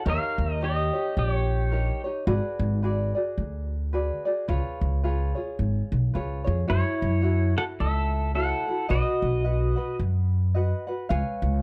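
Twangy, compressed electric pedal steel guitar, played with fingerpicks and slide and swelling in volume, sings a clean melody up front from 0.0 to 2.0 seconds and again from 6.7 to 10.0 seconds in this relaxed, languid Hawaiian piece at 109 BPM with a gentle swing, carried by light, fingerpicked acoustic tenor ukulele and a woody, growly, thumpy pizzicato upright bass on steel strings through a progression from D#7 toward F#m7 and B, all captured in a dry, close, 1970s-style studio sound.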